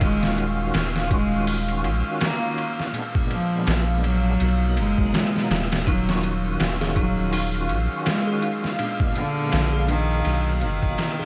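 A melancholic, brooding trip hop groove in Eb minor opens at 0.0 s over a bed of vinyl crackle, moving at 82 BPM in 4/4 with a swung sixteenth-note feel. Up front, a compressed, pitched-down sampler-style drum kit pairs a thumpy kick and medium-tuned snare with hi-hat and ride, all muffled and overdriven, while a soft, round dub sub bass sits deep beneath it. A single bowed cello carries the melody with a biting, nasal, earthy tone, light vibrato and an airy bow, trailed by dub echo. A clean tonewheel organ supplies full accompaniment through chorus vibrato, tremolo, a slow rotary speaker and gritty 12-bit sampler colour, and a dark, detuned sawtooth pad holds slow-attack chords behind everything, cycling through Ebm9, Bb7b9 and Abm9. At 5.9 s a delicate, slightly out-of-tune music box adds tinkling arpeggios with tape echo in the background, joined by acoustic tambourine and triangle in a small room, before the excerpt fades out from 9.8 s in a dry mix.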